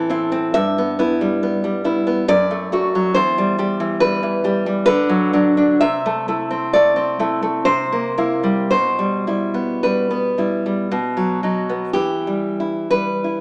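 A fingerpicked nylon-string guitar sits up front in this short, wistful and passionate romantic piece for solo classical guitar, cut from a longer work. Its acoustic tone is deep and classical, ranging from E2 to E5, and a finger squeak is audible on the strings. The playing moves in a flexible rubato in 3/4, drifting between 53 and 71 BPM, in E minor with tuning at A4 = 442 Hz. The harmony descends through Am, Em/G, D/F#, C/E and Bm/D, then colours the line with a C7 before reaching B at 10.9 seconds and settling on Em at 11.9 seconds, where a new section begins. A moderate recital-hall reverb gives the notes a gentle tail, while the overall sound has a compact, small-speaker character.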